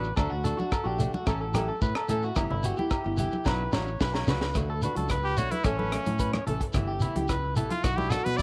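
A brilliant, forceful trumpet with vibrato takes the spotlight at 5.2 s, close-miked and up front as it solos in a pop style over this danceable, warm highlife guitar band clip, cut from a longer piece. Beneath it, a fingerpicked flamenco guitar with audible finger squeak and a slightly broken-up, twangy electric guitar playing arpeggios through tape echo circle the same four-chord progression twice. A dark, round fingered electric bass, direct and punchy, anchors the groove alongside a tight funk drum kit with a high-tuned snare, tight kick, hi-hat and rim click, whose fill at 3.5 s leads into the trumpet's section. A grainy, mellow shekere sits close, while bright, dry congas and ringing, vintage-sounding agogo bells stay in the background, the bells dropping out at 4.3 s. Light reverb gives the whole band the feel of a small room.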